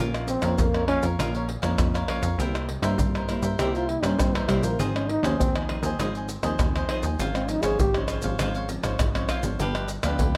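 This bittersweet, lively samba and choro fragment at 100 BPM opens with crisp picked cavaquinho, a woody, thumb-plucked nylon-string guitar on old strings sitting in the background, and a punchy, funky analog bass with a fast-attack filter pluck, joined almost at once by soft-handed maracas, pandeiro, tamborim and a deep surdo placed up front in a live room. At 0.3 seconds a mellow trombone takes a jazz-style solo with light vibrato and tape echo, moving over Bbm, C7, Ab6 and Dbmaj7/Ab before falling silent at 8.0 seconds, ahead of the harmony's turn to G7 at 9.6 seconds. A light reverb surrounds the whole.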